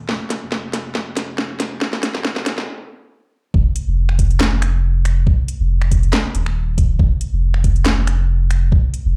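A soft, round sub bass opens this cut from a longer deep dubstep track, sitting low and sustained up front with a mellow square-wave character and a fast attack. Almost at once a garage drum kit of finger snaps, handclaps, hi-hat and snare builds up through a drum fill, its cracking snare and metallic hats layered with a tape-warm, produced edge. The fill halts at 2.7 seconds for a brief stop before the drop lands at 3.5 seconds, where a knocking electronic kick drum joins up front. At 139 BPM in 4/4, the groove moves in a half-time feel with a light swing on the sixteenths. The whole piece sounds as if played on a big sound system in a bare room, with large studio reverb and a high-pass filter giving it a cavernous, dark atmosphere.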